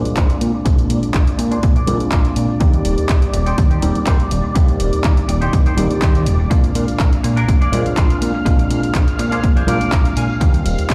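A gritty, overdriven reed electric piano through a combo amp, a lush vintage string machine with ensemble chorus and sampler grit, and a fat, detuned sawtooth bass open this funky, joyful filtered disco house excerpt at 123 BPM in Bb mixolydian, with all three pumping against the up-front, tape-warm electronic kick as a filter sweep runs across the whole passage. A punchy analog drum machine adds handclaps and hi-hat, ringing tambourine and soft-handed congas sit in the background, and a clean, compressed semi-hollow guitar carries the riff through lush chorus. The harmony moves between Bb9 and Eb6, a clean electric guitar fill arrives at 9.4 seconds, and the mix sounds like it is played on a big sound system in a bare room.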